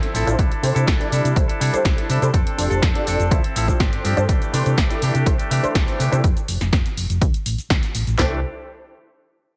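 Joyful and funky, this filtered disco house excerpt moves at 123 BPM in C major, with a nasal, detuned polysynth comping through chorus, phaser, cassette tape and a low-pass filter alongside a bright, twangy clean guitar riff, both pumping with sidechain. A round, hollow-body fingered bass enters at 0.1 seconds, while two punchy analog drum machines supply hi-hat, shaker, snare, handclaps, kick and toms, the hi-hat and shaker kit sitting up front. A filter sweep runs from 4.3 to 8.2 seconds over chords like C69, Dm9 and G7sus4, all in a light reverb with a heavily compressed radio sound.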